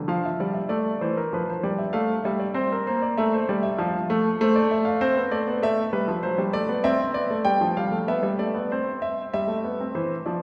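Elegant and lively, this baroque-style two-part invention for solo grand piano moves at 98 BPM in a straight 4/4, cut from a longer piece and set in F major. The warm, polished piano sits up front, spanning E3 to G5 as the harmony travels from F through G7/F and C7, then turns toward C by way of D7/F# and G7, ending on C at 8.7 seconds. A wet concert hall reverb places the listener further back in the room, giving the present tone a resonant, spacious halo.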